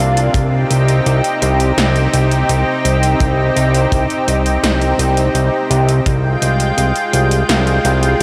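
Synthwave at 84 BPM in C minor, nostalgic and nocturnal, cut from a longer piece: a lush, detuned sawtooth unison pad with chorus and a fat, nasal, saturated analog bass on C2 both pump to the sidechain, while overdriven 80s electronic drums with a gated snare and metallic hats enter at 0.2 seconds and a tight acoustic kick plays from 0.3 to 6.2 seconds, moving from Cm to Fmadd9/C inside a dreamy mix drenched in a huge 7.1-second reverb.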